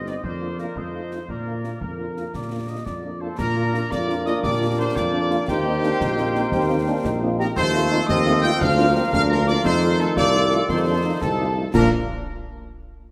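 Proud and rousing, this military-style wind band march in 6/8 at 115 BPM and Bb major sets a clear, distant trumpet section on the melody over a mellow, up-front tuba bass, a tight woodwind line, tight horn accompaniment and close, dry concert snare, bass drum and dark clash cymbals. A pure, bright piccolo with vibrato joins at 3.2 seconds, soon followed by soft-attack trombone chords and a background euphonium line. The ensemble sits in a wet scoring-stage reverb, and the excerpt is cut from a longer piece.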